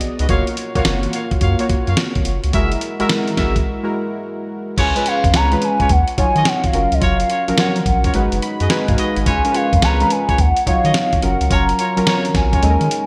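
Bright 1980s-style digital production with a moderate plate reverb frames this confident, bouncy new jack swing R&B excerpt, driven by a gritty, compressed sampler-style drum kit with a thumpy kick and gated reverb, a deep, round analog bass, and detuned, chorused analog keys. Tight, mellow horn stabs with light vibrato punctuate the groove, and a break at 3.7 seconds clears the way for a hollow, woody clarinet-like synth lead that carries the melody from 4.8 seconds. The keys step forward with a fill at 8.1 seconds over jazzy seventh and ninth chords.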